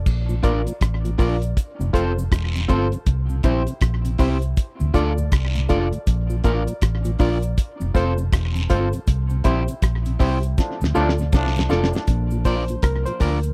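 Roots reggae at a laid-back 80 BPM in 4/4, this short passage cut from a longer piece swings its sixteenths and cycles through Bb, F, C and D minor with an unhurried feel. A cloth-damped, thuddy drum kit with a fat snare, tight kick and dark cymbals sits up front beside a round, foam-muted fingered electric bass, while cabasa and guiro add a faint texture. A mellow tonewheel organ with chorus vibrato and slow rotary speaker sits in the background, joined by a dark electric guitar just at the edge of break-up, carrying tape echo. A reedy, barky electric piano with light overdrive and spring reverb punches in stabs. From 9.1 seconds the band hits a shared accent, and at 10.6 seconds a drum fill arrives as a warm, punchy trombone section with tape echo briefly plays a second line. At 12.1 seconds the electric piano steps forward for a solo, all captured in a dry, close 1970s-style studio sound.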